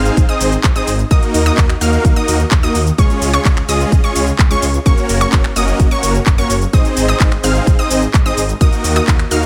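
A straight 4/4 pulse drives this triumphant, euphoric festival progressive house excerpt, with a punchy, up-front electronic kick arriving at 0.2 seconds and sitting loudest in the mix. Just ahead of it, at 0.1 seconds, a layered house kit of cabasa, finger snaps, handclaps and metallic hi-hats fills in the groove, both drum parts carrying a tape-warmed character from being re-recorded in a small room. Huge, lush supersaw chords play an up-front riff with fast attack and sustain, pumping against the kick through sidechain compression and trailed by tape echo. Beneath them, a thick, saturated detuned saw bass with a mellow chorus sheen pumps in the same way. High above, a bright, decaying unison pluck spins arpeggios colored by ring modulation, a noise layer and a filter sweep, also pumping and echoing. The harmony cycles through Ab, Ebm, Db and Gb in a dry, tightly produced mix that is cut from a longer piece.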